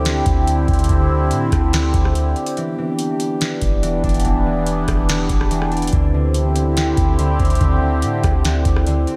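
A sweeping, wave-folded resonant pad sits up front with chorus, phaser and sidechain pumping, holding sustained chords from D9sus4 to Em7 and back over a soft, round 808-style bass and a booming, tape-warm analog drum machine with a deep kick, crisp snare and metallic hats, while a fingerpicked concert harp enters at 2.6 seconds with ringing arpeggios in the background through a diffuse ambient delay, in this melancholic, hazy half-time cloud-rap excerpt at 143 BPM, soaked in dreamy plate reverb.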